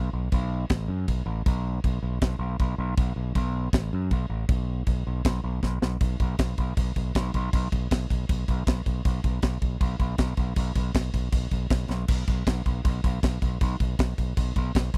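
A growling, overdriven fingered electric bass opens this epic, relentless heavy metal passage, bright and up front, with a polished acoustic drum kit joining at 0.3 seconds on crash cymbal, punchy kick and a medium-tuned snare in a small, airy room. The opening half-time feel gives way after a drum fill from 5.6 to 6.0 seconds to a straight-time section, punctuated by another fill at 11.9 seconds. The sound is dry and close, in the manner of a 1970s studio recording.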